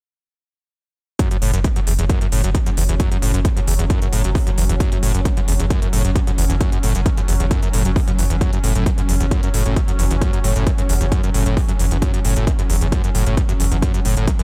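At 1.2 s this driving peak-time techno excerpt starts with a heavy, up-front electronic kick drum, smooth layered hi-hats and a screaming acid riff, all at 133 BPM in a straight 4/4 over an F#5 chord in F# minor. The acid line is squelchy, resonant and aggressive, a distorted sawtooth with a filter sweep, analog chorus, 12-bit sampler grit, tape echo and sidechain pumping as it works between E2 and A2. A deep, thick sub bass joins at 1.4 s, holding F#1 with tube saturation, a low-pass filter and its own pumping. From 1.9 s a swarming, detuned drone of sine and triangle tones fades in slowly between F#3 and C#4, grainy and tense, bathed in its built-in reverb and breathing with the sidechain. The kick and hats carry a touch of studio reverb in an otherwise dry, close mix, and the whole piece stays intense and driving as it is cut off at 14.4 s.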